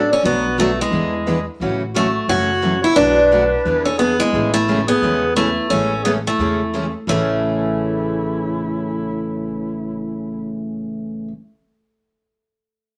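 Acoustic string swing in A major at 175 BPM, this charming, swinging excerpt features a bright, boxy picked parlour guitar carrying the melody up front, a clarinet with vibrato and a soft attack weaving a second line until 10.6 seconds, a full-bodied jumbo guitar with audible finger squeak and a very quiet fresh-stringed auditorium guitar picking accompaniment from 0.2 seconds, and a woody, thumpy pizzicato upright bass underneath, all in a moderate studio reverb.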